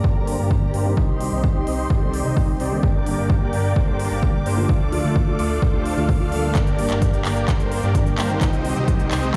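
A straight 4/4 pulse at 129 BPM drives this euphoric, anthemic festival progressive house build-up in G minor, cut from a longer piece. A punchy, up-front electronic kick anchors it, while a crisp, tape-tinged big-room kit of handclaps and hi-hats adds a drum fill from 6.6 seconds. A huge, detuned supersaw riff moves under a filter sweep and digital delay, pumping alongside a fat, saturated analog bass and dark, lush bowed strings holding sustained chords over Gm, Cm and Dm, while a soft, felt-muted upright piano with audible action noise murmurs in the background, a very quiet riser enters at 7.6 seconds, and the mix sounds as if played through a big sound system in a bare stone room.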